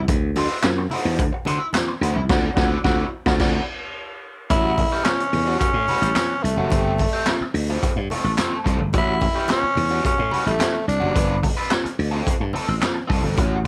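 Funk with a strutting, playful swagger, this dry, cassette-recorded excerpt rides a punchy, growly slap bass and a gritty, boomy garage drum kit with crash, handclaps, hi-hat and high-tuned snare, while low-tuned congas ring softly in the background and an overdriven wah guitar is picked underneath; a bright, vintage trombone slips in behind a band accent at 2.3 seconds before a breathy, raspy tenor saxophone takes the lead from 4.5 seconds with scooped, growling jazz phrases.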